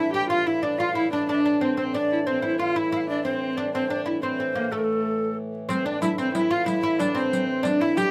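Medieval dance in A minor at 122 BPM in a straight 6/8, mysterious and ancient, where a dark, woody viola da gamba with light vibrato carries the melody up front while a breathy tenor recorder with a crisp chiff and a deep, plectrum-plucked fretless oud add second lines over a reedy harmonium drone in a boxy small room, a riq with bright jingles joining at 5.7 seconds, all under light reverb and vinyl crackle in this excerpt cut from a longer piece.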